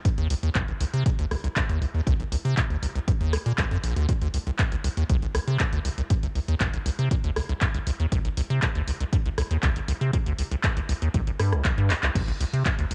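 Acid house at 119 BPM in C minor (tuned to A4 = 444 Hz), this gritty, trippy fragment of a longer piece rides on a squelchy, hollow square-wave acid bass riff, resonant and up front, with a filter sweep, fast attack, decaying notes and sidechain pumping. A dry, punchy electronic kick and an analog drum machine with crash cymbal, handclaps, hi-hat and rim click, both carrying a cassette tape character, play beneath it throughout, with a drum fill at 11.9 seconds. Light reverb and digital ambience color this home cassette recording.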